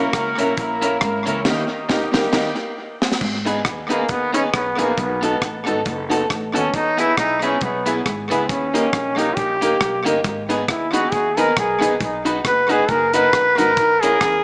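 A brilliant, vibrato-rich trombone takes an up-front solo from 3.9 s in this energetic, mischievous ska excerpt, after a smooth-topped horn section in octave doubling carries the melody until 2.6 s, all over jangly tack piano stabs, a slightly broken-up electric guitar in the background, woody pizzicato upright bass and a dry reggae kit with a high-tuned snare and tight kick, with tape echo on every part but the bass and a wet club reverb heard through a small-speaker sound.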